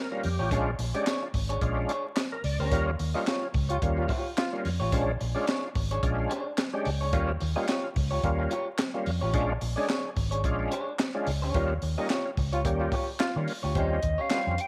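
An overdriven tonewheel organ leads this strutting, gritty funk cut, its thick stabs run through chorus vibrato and a slow rotary speaker and sitting up front from the very start, opening with a short fill. It moves at 109 BPM in 4/4 with a 16th-note swing, cycling between Eb9 and Bb7#9 chords before landing on Eb13. A dark, round, foam-muted fingered electric bass and a compact cocktail kit with a high-tuned snare, punchy kick, hi-hat and handclaps sit dry and close beneath it. A picked electric guitar at the edge of break-up, compressed and slightly broken-up, fills out the accompaniment. The band hits accents together, and a mellow, close-miked trombone adds brief jazz-style second lines on a single note with light vibrato. At 13.8 seconds a hollow, tongued concert flute steps forward with a short melody, all of it wrapped in spring reverb, a small room and a layer of vinyl crackle, in a passage cut from a longer piece.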